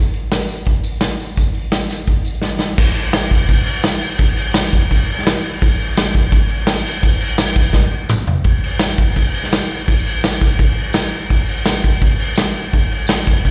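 Rock excerpt at 169 BPM with a rowdy, swaggering mood, where an up-front vintage drum kit, with its dark cymbals, punchy kick, medium-tuned snare and pumping small-room character, drives the beat and throws in fills at 2.5 and 7.8 seconds, while a jingly, close and dry tambourine sits in the background, all heard as a live gig through the venue's PA with recital hall reverb.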